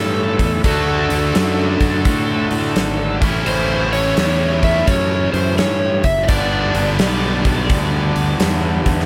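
This short cut from a longer blues rock and southern rock power trio piece opens with a warm, overdriven slide guitar carrying the melody. Beneath it sits a bright, double-tracked electric guitar riff placed up front, and a growly, fuzz-driven fingered bass that adds a punchy low end. A huge arena drum kit joins at 0.4 seconds with hi-hat, a medium-tuned snare and a punchy kick, set in a hall with a pumping room sound. The groove is driving and raunchy at 85 BPM in 4/4 with a swung eighth-note feel, rooted in A mixolydian as the chords move from A to D, back to A, then to G. The slide melody stops at 8.4 seconds while the riff, bass and drums carry on to the close, all under a light reverb.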